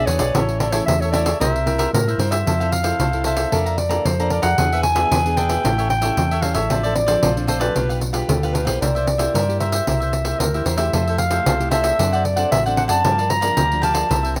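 A growling clarinet carries the melody with a raspy, gritty jazz tone and light vibrato, leading this lively, sunny samba and choro excerpt in F major at 113 BPM. A bright, crisp picked cavaquinho and a fingerpicked classical nylon-string guitar in the background supply the accompaniment, while a dark, round hollow-body electric bass anchors the low end. A jingly pandeiro, compressed and saturated with hard hands, sits up front in a small room, giving the rough home demo mix a homemade feel.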